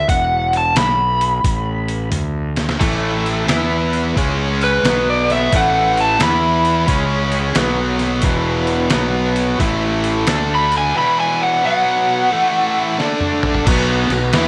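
A raunchy, swaggering blues rock and southern rock excerpt in a power-trio vein opens with an overdriven slide guitar played with fingerpicks, carrying the melody up front through a slapback echo. A fuzzed, growly fingered bass and a gritty, compressed, pitched-down sampler-style drum kit with a thumpy kick and medium-tuned snare join at once, and the groove has a loose swing. After a drum fill, a tight, bright, double-tracked distorted guitar riff arrives up front at 2.8 s, along with a thick, overdriven tonewheel organ holding sustained chords in the background through chorus vibrato and a slow rotary speaker. The harmony moves through sparse suspended chords and breaks before settling into driving power-chord changes. The slide guitar stops at 13.0 s as another drum fill carries the band on, all set in a moderate echo chamber reverb.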